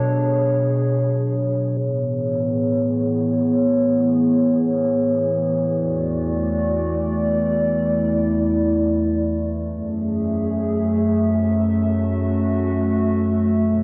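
Hip hop in free time and A major, this blissful, floating excerpt features only a warbling, detuned tape-like pad with chorus, reverb and a low-pass filter, sustaining up front over Bm, Amaj7, E7sus4 and F#m7 with a filter sweep from 1.8 seconds, all in a dry, gritty, nostalgic lo-fi recording with a dark top end.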